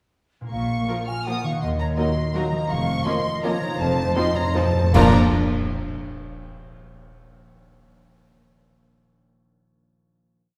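A dark, sweeping orchestral ballroom waltz in Bb minor at 151-178 BPM with a rubato feel, where a lush, rich violin section carries the melody, doubled by a mellow, hollow flute, over a ringing harp playing rolled-chord arpeggios, a focused cello and double bass line on the beats, after-beat and sustained chords from a clear, very quiet violin section, a warm viola section, a distant French horn section and a tight trombone section, bright cymbal swells, crashes and bass drum strokes from 2.7 seconds, and a timpani roll from 3.8 seconds into a band accent and final Bb chord at 4.9 seconds, all heard from further back in a reverberant recital hall.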